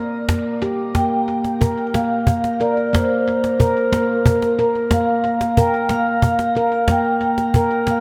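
A dark, smooth vibraphone played with soft mallets and a fast motor vibrato carries the melody in this dreamy, calm excerpt of meditative world music in 6/8, over ringing steel handpan arpeggios played up front with soft fingertips, both bathed in shimmer reverb and the vibraphone trailed by tape echo, while a snappy, close cajon with snares, struck with hard hands and given its own tape echo, joins at 0.3 seconds, all set in a wet spring reverb within an echo-heavy mix.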